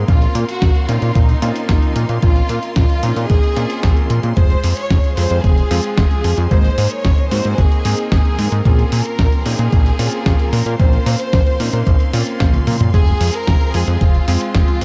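Nostalgic and danceable, this short cut from a longer italo disco track rides a straight feel in 4/4. A thumpy, gritty electronic kick sits up front, joined by a dusty soul sampler-style kit of hi-hat, medium-tuned snare and toms with a tape-warm, compressed character, and a drum fill arrives at 12.4 seconds. Underneath, a fat analog bass with sawtooth thickness, tube saturation and a filter sweep holds sustained, detuned low notes close to the listener. A bright electric grand piano adds cutting, clangy stabs with chorused unisons, while a clear studio string section holds lush, bowed chords in the background. Over this, a rich chamber violin section carries an expressive melody with vibrato and tape echo, moving through Bbmadd9, Fm and Abadd9 chords in a dark production with little reverb.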